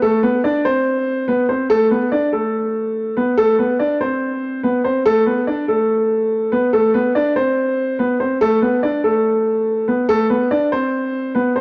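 A dark concert grand piano plays alone from 0.0 to 11.6 seconds, its mellow, boxy tone filtered through a low-pass filter and sitting up front with deep bass and long sustain, ranging from A3 to D5 over a Bm7 chord. This menacing, ominous hip hop fragment moves at 143 BPM in a half-time 4/4 feel in B phrygian. The sound is dry and gritty, touched by light reverb and a small-room ambience.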